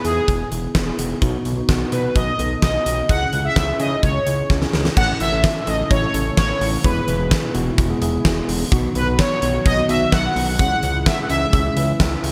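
Synth-pop at 128 BPM in C# minor, melancholic yet driving, with a brassy, wave-folded analog synth brass melody up front over a mellow tine electric piano, a thick detuned sawtooth bass and a huge arena drum kit with a fat snare and punchy kick. After a drum fill at 4.5 seconds, a string machine playing cellos enters at 5.0 seconds with soft, evolving sustained chords in the background. The chords move through E, B, C#m and A in a bright 1980s-style digital production with light reverb, cut from a longer piece.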